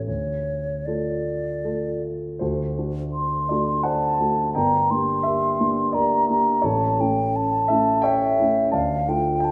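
Yearning and melancholic, this short excerpt from a longer Romantic classical piece pairs concert flute with grand piano in D minor, moving in a flexible, rubato 3/4 at roughly 76-88 BPM and tuned slightly high to A4 = 443 Hz. The flute carries the melody between C#5 and C6 with a pure, hollow tone, vibrato, soft attacks and lifted highs, sitting up front in the mix. Beneath it, the dark, mellow grand piano supplies accompaniment across a broad range from G1 to A5, also placed close, with both instruments sounding throughout the 9.5 seconds. The harmony opens on D minor, then shifts at 2.4 seconds to D7 as a new section begins, passing through G minor and A major before settling back on D minor near the close. A recital hall reverb with a 1.7-second decay surrounds the duo, giving the performance a spacious, resonant setting.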